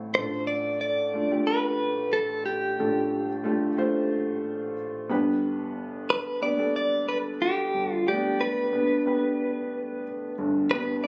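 This is a pop piece with an uplifting, anthemic mood in a straight 4/4. A dark, mellow grand piano carries the accompaniment from the first moment, reaching from deep bass notes into its upper-middle register with a smooth, vintage character. A clean, picked electric guitar, recorded direct and compressed, takes the melody from 0.1 s, treated with tremolo and plate reverb. Both parts sit up front as the harmony moves from Dm/A to Gadd9 at 5.1 s. The recording sounds as if captured on a phone in a small, reverberant club room, with added compression and a muffled top end. It is cut from a longer piece and runs to 11.1 s.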